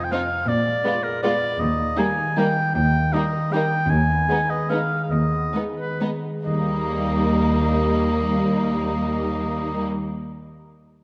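A clear, soft-attacked solo oboe sits up front in this short cut from a sweeping, festive orchestral ballroom waltz, carrying a second line above the strings from the opening moment. A ringing concert harp weaves fingerpicked arpeggios beneath it and lingers until 10.4 seconds, just after the other parts finish. One violin section carries the lush, smooth-topped melody with vibrato, while a second violin section adds a rich, even second line and the violas fill in a bowed accompaniment. A focused cello section, also up front, lays down the bass. The rubato waltz slows between 3.3 and 6.5 seconds before a new passage begins, all set in a dark, warm production with moderate scoring-stage reverb.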